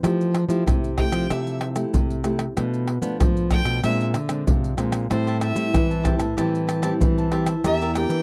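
A playful, lively samba-choro fragment at 95 BPM in straight 4/4 opens at 0.0 seconds with two fingerpicked nylon-string guitars in a classical style: one comps chords up front while the other, with fresh strings, carries the bass line. Beside them, a close, dry percussion section of maracas, pandeiro, tamborim and a deep surdo is struck with hard hands and sits prominently in the mix. At 1.0 seconds a single bright, biting fiddle enters with the bowed melody, playing intensely with light vibrato yet sounding somewhat distant behind the rhythm section. A crisp, picked cavaquinho joins at 5.1 seconds to add high accompaniment. The harmony moves from Fmaj9 through Bm7b5, Bb9 and Am7 to Em7b5, and the whole fragment has the intimate, nearly reverb-free sound of a 1970s studio recording.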